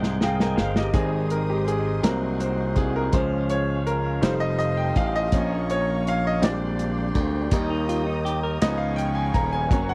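A brilliant, up-front grand piano opens with a fill alongside the drums, then takes the solo from 0.9 s in this slow, soulful and hopeful gospel piece in 6/8 and Ab major at 55 BPM, moving from Abmaj7 through Db, F7 and Bb13 toward Eb and Db7. Beneath it, a muffled, punchy soul drum kit and a glassy slap bass sit close, while a lightly overdriven tonewheel organ with fast rotary speaker and a woody, lush string section, which enters at 0.9 s, hold sustained chords in the background. A dark, clean hollow-body electric guitar adds a brief second line with slapback echo at 7.7 s, all captured in a dry, close 1970s-style studio sound.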